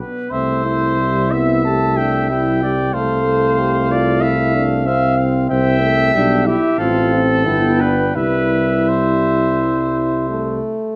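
Heard through close, detailed microphones in a resonant recital hall, this brief passage of classical brass quintet music is cut from a longer piece and carries a triumphant, glowing mood. The pulse moves with uneven beats and rubato in four, and the harmony settles on C, shifts to F over C, returns home, then passes through F over A and G before landing on C near 8.2 seconds. A clear cornet carries the melody high above the group with a smooth top, while a warm trumpet with light vibrato, placed up front yet sounding distant and roomy, plays a second line beneath it from the very start. The French horn, clear and soft in attack, provides accompaniment from 0.0 seconds and sounds on until 11.0 seconds, joined by a trombone that sits quietly in the background. Anchoring the ensemble, a mellow tuba with light vibrato and a gentle onset holds the bass up front, giving the hall's lingering reverb a rich foundation.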